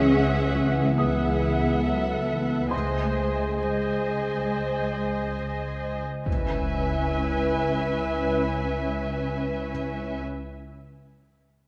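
Eerie and tense, this excerpt from a suspense film score moves at a slow 70 BPM in C# minor, its harmony resting on a held C# bass beneath shifting chords before settling on C#m7. Muted, veiled string sections carry the music throughout: symphonic violins hold the melody while a chamber violin section adds a smooth-topped second line, violas with a soft attack fill the middle, and lush cellos join an up-front double bass section on the low end, all bowed with vibrato. A mellow French horn section sustains chords with light vibrato, while a warbling, detuned tape-like pad with chorus and its own reverb sits in the background, lending a nostalgic lo-fi haze. A felt-muted upright piano adds intimate, soft texture high in the background, its action noise audible, until it stops at 6.3 seconds, the moment a huge, dark impact lands and carries through to the end. The scoring-stage reverb is moderate and the production is dark, giving the ensemble a shadowy, enveloping sound.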